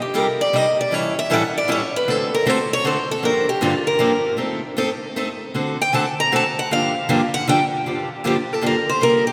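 A swinging 3/4 pulse at 156 BPM drives this fiery jazz excerpt in G minor, where one picked steel-string acoustic guitar carries a bright, boxy parlour-toned melody up front while a second picked steel-string guitar, with fresh strings and audible finger squeak, supplies accompaniment through chords such as Cm7, A7, D7 and Gm7, both bathed in a cathedral reverb with a long 4.4-second tail, as the piece shifts into a new section at 7.9 seconds.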